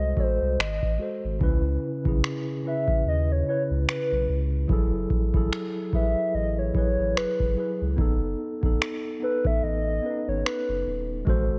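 Worn, warbly cassette-tape character and a digital ambience wrap this late-night, longing contemporary R&B excerpt at 73 BPM, swung on the sixteenths and moving through jazzy chords such as G#7b9, C#m7, F#m9 and B9/F#. A mellow tine electric piano and a round, sine-like sub bass hold the ground up front, while a booming analog drum machine enters at 0.2 s with a deep kick and finger snaps. Above them, a soft, hollow, woody clarinet-like synth lead carries the melody with vibrato and chorus until 11.1 s.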